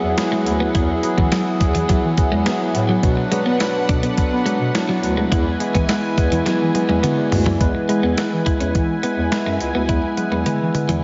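A mellow tine electric piano, a lush, airy sawtooth unison pad with chorus and phaser, a vibrato-laced jazz-style bass clarinet and an overdriven semi-hollow guitar in the background open this romantic, uplifting 1980s-style pop excerpt in E mixolydian at 105 BPM. They are joined at 0.2 s by a thumpy, up-front 12-bit drum machine with tambourine and toms, and at 0.3 s by a compressed clean electric guitar riff drenched in lush chorus and diffuse delay. The harmony moves from Eadd9 to E at 5.3 s, drum fills arrive at 6.5 s and 9.9 s, and the overdriven guitar drops out at 8.1 s, all in a dreamy, reverb-soaked hall mix.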